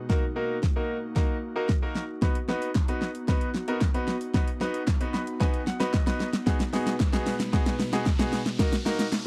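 A straight 4/4 groove at 113 BPM drives this euphoric, summery dance-pop excerpt in B major, built as a build-up with a drum fill running through its full 9.3 seconds. The pop drum kit sits up front with a punchy kick, fat snare, metallic hats and shaker, its layered, electronic sound carrying a tape-warm edge. A bright baby grand piano plays accompaniment alongside it, brilliant and intimate with audible action noise and sidechain pumping, and adds a fill between 4.9 and 6.5 seconds. Behind them, an airy, breathy pad holds sustained chords with slow attack, long release, chorus and its own sidechain pumping, moving from D#m to B, then G#m7/B and back to D#m. A hollow, distant group handclap joins in the background at 2.8 seconds, and an electronic riser enters at 4.6 seconds. The whole thing has a dry, close 1970s-style studio sound with light reverb.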